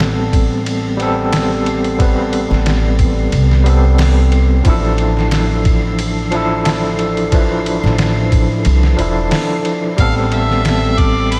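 A dreamy, reverb-soaked mix with a huge ambient wash gives this smoky, cinematic trip hop excerpt its hazy, late-night atmosphere. At 90 BPM in A minor with a light swing on the sixteenths, a compressed, pitched-down sampler-style drum kit sits up front, its thumpy kick, medium-tuned snare, hi-hat and ride carrying a gritty, tape-warm character in a small room ambience. A woody pizzicato upright bass anchors the low end beneath a bright, barky overdriven tine electric piano, pushed through a combo amp with tremolo and tape echo, that comps on Am9 and Dmadd9/A chords. From 0.1 seconds a granular, flickering texture with a slow attack and long release hovers far in the background, detuned and sustained high above the band. At 10.0 seconds a vintage harmonica enters as a solo voice, punchy and full of vibrato and scooped notes, just as the harmony returns to Am9.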